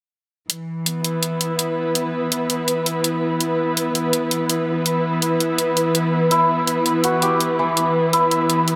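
Muted, veiled strings hold sustained chords in E minor with a gritty 12-bit sampler edge, while bright electronic hi-hats sit up front from 0.5 s in a dark, tense half-time drum and bass groove at 165 BPM with a light swing. At 6.3 s a hammered santur enters with shimmering arpeggios carried on tape echo, and the whole passage is framed by a moderate echo-chamber reverb.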